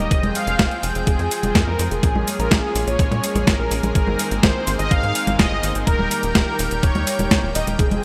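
Italo disco at 125 BPM in a straight 4/4, this short excerpt cut from a longer piece has a melodramatic, nostalgic mood over chords moving from Fmadd9 to Bbm7, Abadd9 and Eb. A mellow synth brass carries the melody between Ab4 and F5, its round, dark sawtooth tone shaped by a filter sweep and colored with chorus, phaser and digital delay. Beneath it a lush unison pad holds sustained chords, thick and airy with detuned saws, a noise layer and a soft attack under chorus. A tight sequencer bass drives the low end with punchy, plucky notes that decay quickly. From 0.1 seconds a clean 12-bit drum machine plays cabasa, congas, hi-hat and a medium-tuned snare sitting up front, alongside a thumpy electronic kick, both overdriven and re-recorded in a large room. Light reverb and bright 1980s-style digital production tie the track together.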